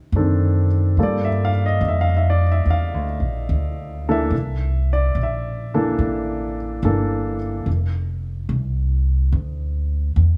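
Romantic and late-night, this swung jazz ballad fragment pairs a woody, thumpy pizzicato upright bass with an intimate grand piano whose action noise and long sustain sit up front in light reverb, moving through D7b9, Gm9 and C13 before the piano stops at 7.7 s, where the harmony settles on F5 and the bass carries on alone until 10.4 s.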